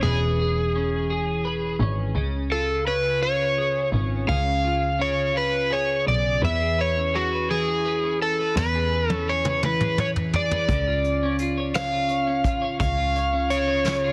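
A tender, swaying pop ballad in 6/8 at 56 BPM opens with an overdriven slide guitar singing the melody up front through tape echo, over a clean, double-tracked twelve-string electric guitar and a bowed double bass with a biting, earthy tone and light vibrato, all moving between E6 and C# chords. At 8.6 seconds a vintage brush kit enters with a drum fill, bringing a punchy kick and a warm, rolled-off top. The whole fragment, tuned slightly below standard pitch, sits in a small room with light reverb and has a heavily compressed, radio-like sound.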